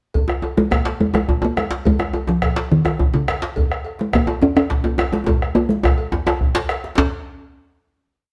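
A stone room's reverb surrounds this short, complete West African drum ensemble piece, played live together at 141 BPM in a straight 12/8 with an earthy, driving mood. A metallic cowbell sits in the background with its bell pattern as a deep, dark, saturated bombo holds an evenly spread pattern up front, joined by two djembes: one tight and cracking but very quiet under soft hands, the other medium-tuned, close and dry, playing lead drum phrases. The resonant talking drum carries the melody with motif-based call phrases from 0.6 seconds, and a drum fill from 5.3 seconds leads into a final note that rings until 8.3 seconds.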